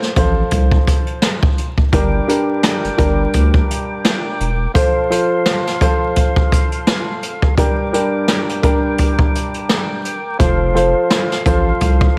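Tough and dark, this boom-bap hip-hop excerpt moves at 85 BPM in G minor with a swung 16th-note feel, a light reverb and a layer of vinyl crackle, and its chords shift between F and G minor. A woody, mellow upright piano sits up front beside a brushed jazz kit with a boomy kick, medium-tuned snare, rim clicks and hi-hat. A thick, saturated sine sub bass plays from 0.2 to 4.7 seconds and returns at 10.4 seconds, while a clean tonewheel organ enters at 1.9 seconds with quiet sustained chords colored by vibrato and a slow rotary speaker.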